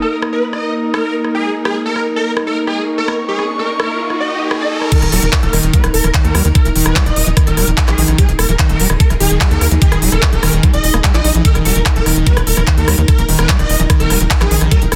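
Psychedelic trance at 147 BPM in Eb major, hypnotic and intense, this cut opens with a swarming, detuned rave lead carrying the melody over a morphing wavetable pad, an airy, breathy pad and an electronic riser, with a crisp-hatted drum and bass kit of handclaps, rim clicks and crash joining at 0.2 seconds, before the drop at 4.9 seconds brings in an up-front knocking electronic kick, a squelchy, screaming acid riff soaked in distortion and tape echo, and a tight, dark sawtooth sequencer bass, with the lead, pads and acid riff pumping in a dense, heavily limited mix with light reverb.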